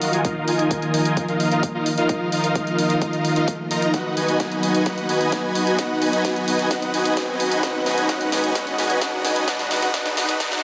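Festival progressive house build-up, euphoric and anthemic, cut from a longer piece, with a thick, detuned supersaw riff up front under a low-pass filter sweep and delay, over a lush, warbling vintage pad holding sustained Bbsus4 and Abm7 chords with chorus and sidechain pumping. A big-room drum kit's hi-hats and huge snare break into a fill at 3.9 seconds, while a punchy electronic kick sits in the background and a very quiet riser enters at 2.3 seconds, reaching a swell at 10.4 seconds. A vast ambient reverb with a 7.1-second tail bathes the mix.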